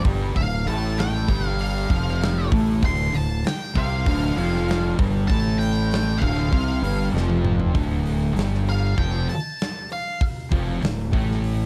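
A growly, punchy fuzz bass sits up front in this heavy, hypnotic stoner and doom metal excerpt at 98 BPM in D minor, tuned to A4 = 438 Hz and holding on a D minor chord. Behind it, two thick, distorted fuzz guitars and a lo-fi, double-tracked overdriven garage guitar grind out the riff over a big acoustic kit with a punchy kick and rolled-off top, while a dark octave-fuzz lead guitar with digital delay enters at 0.4 seconds. After a drum fill at 7.1 seconds, the garage guitar drops out at 7.7 seconds as the lead moves into a solo, all set in a small room with a dark, warm production.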